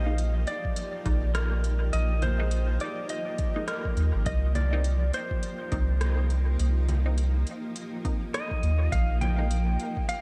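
A 103 BPM groove in 4/4 with a 60% swing on the sixteenths drives this meditative, spacious ambient dub excerpt, cut from a longer piece. An electronic kick drum with a deep thump enters at 0.6 seconds, while an organic electronic drum kit of congas, crisp hi-hat and rim click, treated with dub echo, starts at 0.2 seconds, both re-recorded in a large room. Up front, a soft, round sub bass holds the low end, and a very quiet, muted chord stab with a resonant filter pluck and phaser drifts underneath. A cloudy, evolving granular pad sustains blurred chords through its own built-in reverb, moving from Bb7sus4 to Cm7 and back. Over it all, a clean, twangy lap steel guitar carries the slide melody, its bright tone trailing dub echo into the digital ambience.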